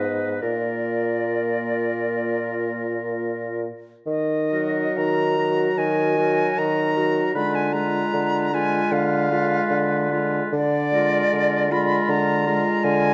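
Yearning and melancholic, this slow, rubato classical movement for wind quintet in Eb minor, at 62-80 BPM, places an airy, expressive flute melody up front over a distant oboe second line with light vibrato, accompaniment from a clear, vintage-toned clarinet and a punchy yet roomy French horn, and a mellow, soft-attacked bassoon bass, set in a dark, warm recital-hall reverb as the harmony moves from Bb to Ebm at 4.1 seconds and Ddim7 at 7.3 seconds.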